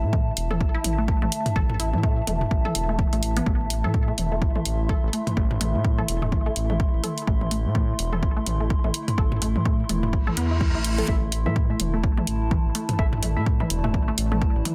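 Cool and hypnotic, this excerpt of swung minimal techno rides a dry, punchy kick and dry hi-hat, both overdriven and up front, with layered electronic toms echoing through delay, a round, deep analog bass and a warbling, nostalgic tape-like pad both pumping against the kick, and a squelchy, resonant blip pluck swirling through phaser and delay, while a reverse cymbal rises at 10.3 seconds into a hollow, dark organ stab that enters at 11.1 seconds, all held in a dense, heavily limited master with light reverb.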